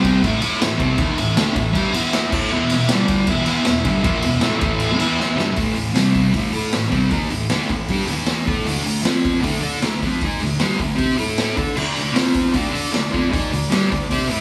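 Garage rock at 155 BPM with a rowdy, raw edge: a fuzzy, double-tracked electric guitar riff sits up front over a punchy, gritty acoustic drum kit in a pumping stone room, while a buzzy vintage combo organ holds sustained chords in the background until 5.6 seconds, returns at 11.8 seconds and slips in a short fill at 14.1 seconds, all captured like a band playing live in one small room.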